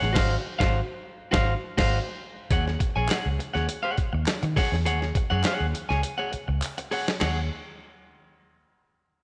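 A straight 4/4 funk groove at 102 BPM in Eb dorian, cool and hypnotic, cut from a longer piece, opens with a band accent on an Ab6 chord before settling onto Ebm7 at 2.5 seconds. A gritty, tape-toned sampler-style drum kit with a thumpy kick and medium-tuned snare drives it alongside a dark, round, foam-muted fingered electric bass, while a picked electric guitar at the edge of break-up adds compressed, slightly broken-up accompaniment. Very quiet, crisp group handclaps join at 3.1 seconds, and a drum fill arrives at 6.0 seconds, all set in light reverb with a dusty, rolled-off top.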